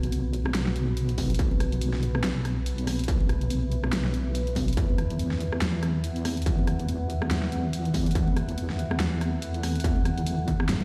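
This deep dubstep fragment, cut from a longer piece, opens with a dark, moody ambient pad, a deep wobbling bass and a dubstep drum kit all sounding at once, in a meditative yet heavy mood at 142 BPM with a half-time, swung feel. The pad holds sustained, mellow chords with a slow attack, long release, chorus and built-in reverb, as the harmony moves from B5 to E5 at 4.8 seconds. Beneath it, the detuned sawtooth-and-sine bass sits up front, compressed and dark with its own chorus. The drum kit brings a huge snare, bright hi-hats and rim clicks, while soft-handed congas from a small room slip in at 0.1 seconds in the background. A distorted, tape-warm electronic kick joins up front at 1.2 seconds, adding weight to the groove. The whole mix carries a light reverb, the sense of a big sound system in a bare room, and vinyl crackle.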